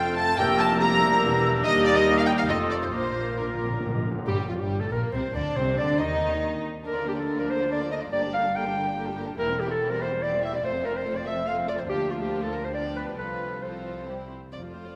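A lively triple-metre pulse with a flexible, rubato feel drives this cheerful classical-period orchestral movement, cut from a longer piece, as an intimate, close chamber violin section carries the melody with light vibrato and soft, sul tasto bowing over a second violin section, violas, dark cellos and double basses. Clear oboe, an airy flute section, very quiet French horns and background trumpet stabs brighten the opening, with a quiet timpani fill arriving at 2.9 seconds before the oboe, flutes and trumpets fall away near 4 seconds. A mellow, vintage-toned clarinet sits up front through most of the passage, and the whole orchestra is heard in a reverberant concert hall.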